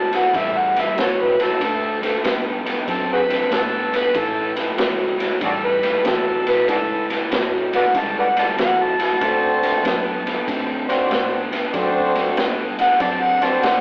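Laid-back and rollicking, this electric blues shuffle swings at 95 BPM over A7 and D7 changes, led by a gritty, overdriven harmonica solo with tongue slaps, scooped notes and digital delay, set over a picked, overdriven guitar riff, a dark, round, foam-muted bass sitting in the background, and a saturated breakbeat kit with a tight kick and rolled-off top. At 9.2 seconds a close-miked horn section adds tight stabs with light vibrato and octave doubling. The whole fragment has the rough feel of a rehearsal-room recording, with a telephone-like tone and a short, wet reverb.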